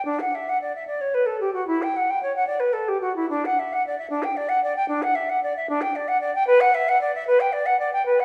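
A silver concert flute plays alone from the first moment in this serene, dance-like baroque-style classical fantasia, moving in a rubato 12/8 at about 75 BPM with an airy, straight tone and crisp attack, its line spanning D4 to G5 and bathed in a wet recital-hall reverb over a brief fragment of a longer piece that lasts 8.2 seconds.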